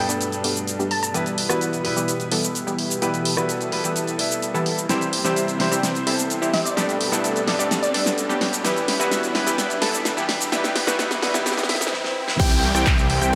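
A straight 4/4 pulse at 128 BPM drives this powerful, anthemic festival progressive house build-up in E minor, cut from a longer piece and moving through Gadd9, Em and C. A big-room dance drum kit with a huge snare, handclaps, hi-hat, cabasa, rim click and crash cymbal sits up front, rolling through drum fills from 4.9 seconds before a stop at 11.9 seconds. A bright grand piano with audible action noise carries the accompaniment under a punchy, detuned supersaw stab riff whose filter sweeps throughout, while a lush, warbling vintage unison pad holds sustained chords in the background. A crystalline wavetable pluck with chorus and delay offers brief melodic fragments, and very quiet electronic risers, swells and downlifters add tension through the build. At 12.4 seconds an overdriven, punchy electronic kick, a thick detuned saw bass and a catchy plucky unison lead playing arpeggios enter, all bathed in a lush digital hall reverb with sidechain pumping on the synths, bass and piano.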